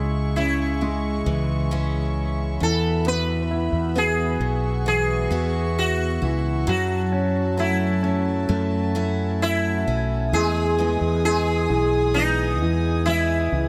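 A buzzing, shimmering sitar carries the melody up front from the very start of this tender, hopeful pop ballad excerpt, over a round, dark fretless electric bass, a clear concert grand piano with deep bass, and a dark string section holding floating, bowed chords. Set in the background, a bright, full-bodied steel-string acoustic guitar plays picked arpeggios through tape echo, with a touch of finger squeak. Light reverb softens the whole, and at 10.3 seconds the music moves into a new section that settles on an Emaj7 chord.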